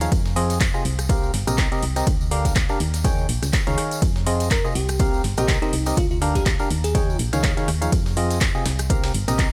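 A swung 4/4 groove drives this bittersweet, energetic piano house excerpt, where a punchy analog kick, metallic hi-hats with handclaps and rim clicks, a dry tambourine in the background, and a gritty, pitched-up breakbeat ride and snare, with sidechain pumping on the cymbal, support an up-front, hollow, nasal organ stab riff with chorus, delay and pumping over a round, dark FM bass that also pumps, while a sparkling, bell-like FM electric piano melody with chorus and delay appears from 4.5 to 7.2 seconds, all over chords cycling through Fm7, Cm7, Gm7/D and Eb9sus4.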